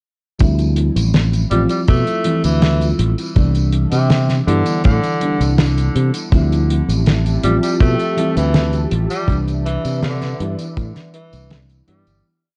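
A dark, cassette-tinged production with light reverb frames this short vaporwave piece, a faded, nostalgic groove at 81 BPM in C major that drifts between Dm11 and Cmaj9. From 0.4 seconds a damped 70s kit plays a slowed pop beat of closed hi-hat, fat snare and tambourine, with a tight, up-front kick, all carrying vintage 12-bit sampler grit and studio reverb under a rolled-off top. A fingered electric bass sits forward with a funky syncopated line, while an FM electric piano layered with a soft pad holds dreamy, rootless chords with syncopated pushes, coloured by tremolo, lush chorus and analog delay. At 1.5 seconds a clear tenor saxophone enters, distant and roomy, playing short jazz-style answering phrases with light vibrato and tape echo. A silky string machine slips into the background at 6.8 seconds with slow-attack sustained chords and ensemble chorus as the piece fades out from 8.3 seconds.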